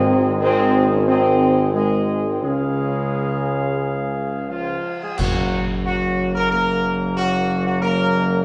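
A straight 4/4 pulse at roughly 84-93 BPM carries this short, regal classical fanfare, cut from a longer piece and tuned to A4 = 437 Hz. A mellow trumpet section sits up front with the triumphant melody, while a distant, dark French horn section and a clear trombone section with light vibrato hold sustained chords in the background, and a warm, present tuba anchors the bass. Very quiet timpani with calf heads and medium mallets, close and dry, sound only at the very opening, and at 2.4 seconds a cymbal swell, bright clash cymbals and concert bass drum join for a stretch. The harmony moves from Ab to Db to Gb, with the second section arriving at 5.2 seconds on a band accent. A wet recital hall reverb surrounds the ensemble, lending the trumpets and horns a roomy sound.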